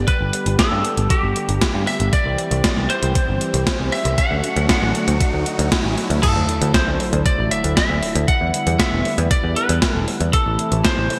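Synthwave at 117 BPM with a nocturnal, driving mood, this excerpt cut from a longer piece sets a bright, slightly broken-up, twangy lead guitar melody with subtle chorus and delay over a smooth, detuned sawtooth pad and a growly, round picked electric bass, both pumping against the sidechain. A thumpy electronic kick and an up-front 80s digital drum machine with gated-reverb snare, hi-hat and crash drive the groove inside a lush hall reverb and bright 1980s-style digital production. A very quiet riser and sub drop runs from 1.2 to 8.3 seconds, with an impact landing at 6.2 seconds as the chords move from G, C and D into Dadd9, Em7 and Am.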